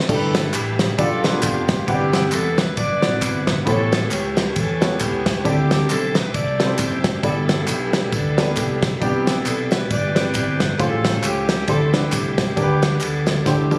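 This jubilant, reverent uptempo gospel passage at 135 BPM in G major swings in 4/4. A tight, clear saxophone section carries the melody from a distant, roomy space with light vibrato, over a woody, slightly detuned upright piano with audible action noise, a round, punchy fingered electric bass and a very quiet, reedy tonewheel organ holding sustained chords through a rotary speaker with key click. Up front, a warm soul drum kit with a fat snare, tight kick and dark cymbals drives the groove alongside compressed, saturated tambourine and group handclaps, with a drum fill at 13.5 seconds.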